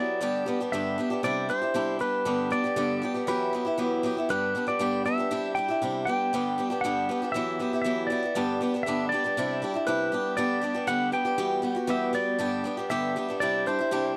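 Rock with an open-road warmth, this dry, close 1970s-style studio recording pairs a clean, twangy lap steel guitar carrying the slide melody with volume swells over a boxy, picked swing-style acoustic guitar sitting up front, both playing throughout as the short cut cycles between G, Cadd9 and Emadd9 chords.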